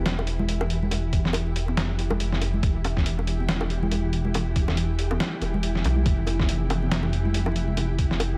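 A cloudy, evolving granular pad and a deep, rumbling detuned saw bass open this dark, cavernous deep dubstep excerpt in E phrygian at 140 BPM with a half-time, swung feel, while a grainy, flickering texture sits in the background and vinyl crackle hangs over a light digital ambience. Muffled, pitched-down sampler-style hi-hat and snare arrive at 0.1 seconds, joined by ringing, close bongos and congas carrying dub echo at 0.2 seconds, before a compressed, thumpy electronic kick enters at 1.1 seconds. The harmony rests on Em before shifting to Fsus2 near the end, with the up-front bass and blurred, luminous pad filling out the low and middle of the sound.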